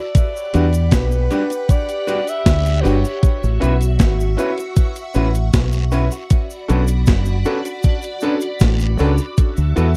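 This dry, close recording has the feel of a 1970s studio, with little reverb around the instruments. It is a tender, sweet passage of lovers rock reggae, cut from a longer piece and set in a straight 4/4. A breathy, mellow alto saxophone with light vibrato and scooped notes carries the melody with a jazz touch and tape echo, then stops at 3.6 s. A swirling, warbling string machine with ensemble chorus and phaser sustains a bright second line throughout. Up front, a gated 80s digital drum machine gives a thumpy kick and gated-reverb snare, joined by a round, dark fingered dub bass, while cabasa and guiro sit close and dry in the background with tape echo. A clear, natural grand piano and a slightly broken-up, lo-fi electric guitar playing stabs both enter at 0.5 s, moving through Em9, A69, Bm7 and D69.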